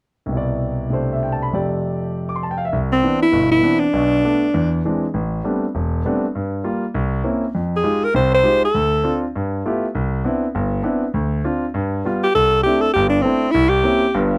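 A punchy, forceful alto saxophone carries the melody in this brisk, swinging jazz excerpt, sitting up front with a jazz-style vibrato across three short solo phrases, the first entering at 2.9 seconds. Underneath, a natural-sounding concert grand piano supplies the accompaniment throughout, its deep bass giving weight to the extended harmony. The changes move through rich colours such as Cmaj9, Eaug7, Am11 and C7b9, lending the music a sophisticated, warm mood. The piano opens alone at 0.3 seconds before the saxophone arrives, and the horn's final phrase begins at 12.2 seconds over a closing C69 and C7b9. The sound is dry and close with little reverb, evoking a clear 1970s-style studio recording.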